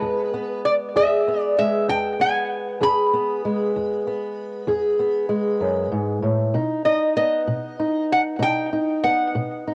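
A slow, straight 12/8 pulse at 64 BPM in E major carries this gritty, laid-back acoustic country blues excerpt, moving from E to B at 6.5 seconds. Up front, a lap resonator guitar played with slide and fingerpicks sings the melody in a metallic, nasal voice colored by tape echo. Alongside it, an old ladder-braced acoustic guitar, fingerpicked on worn strings, supplies a dark, woody, boxy accompaniment, all set in a small room with light reverb and the grain of a home cassette recording.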